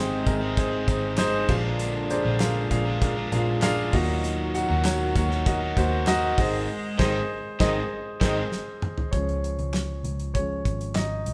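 A cut from a longer piano-driven pop piece opens at 98 BPM in Ab mixolydian, with an up-front grand piano, a round, foam-muted picked bass, a compressed overdriven electric guitar riff and a distant, roomy French horn section in the background, before a damped 70s drum kit with a fat snare, dark cymbals and handclaps arrives at 0.3 s alongside a jingly, very quiet tambourine. The anthemic, warm progression moves through Ab, Bb7 and Ebm, reaching a band accent and a drum fill as the guitar and horns drop out at 8.4 s. The piano then takes a solo over Db at 9.1 s, with bass and drums continuing beneath it in a live-band room sound carrying a moderate large studio reverb and a faint mains hum.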